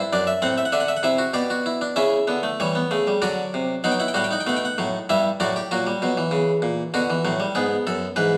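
This is a classical, baroque-style fugue in four parts for solo harpsichord, cut from a longer piece and moving at a stately yet lively 97 BPM in 3/4 with a straight feel. The harpsichord sits up front with a bright, plucked, mid-forward tone, an Italian-style instrument with one set of strings, covering a range from F#2 to G5. The harmony moves through a chain of chords, opening on D7/F# and G/B before a new section arrives at 2.0 seconds on A7/C#. From there it passes through D, B7, Em/G and F#7/A# to settle on Bm and then E near 7.5 seconds. A wet stone room reverb with an RT60 of 1.3 s surrounds the instrument, lending the crisp plucking a resonant halo over the roughly 8.4-second span.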